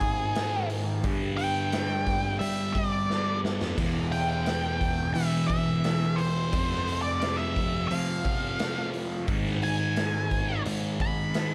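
A straight 4/4 pulse drives this mysterious, hypnotic excerpt of psychedelic rock. A raw garage drum kit with a boomy kick and a gritty, saturated sound in a pumping stone room kicks off a fill at 3.1 seconds, while a double-tracked, phased fuzz guitar riff and a round, punchy overdriven picked bass sit low beneath an octave-fuzz lead guitar melody trailed by tape echo. The dark tone is bathed in moderate spring reverb as the chords move from G#5 through G5, Em and F5 to G#m.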